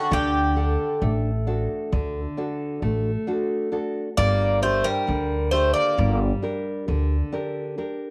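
Greek folk from a bouzouki band, melancholic and reflective, in 9/8 at 133 BPM in G harmonic minor, with a bright, metallic picked bouzouki carrying the up-front melody over a second, warmer double-string bouzouki line tinged by cassette tape, a fingerpicked nylon-string guitar of deep classical tone with audible finger squeak and the same tape coloring, and a woody, dark pizzicato upright bass on steel strings, the harmony moving from D to Gm at 4.2 s in moderate spring reverb and studio ambience until the bouzoukis stop at 6.2 s and the guitar carries on to 8.1 s.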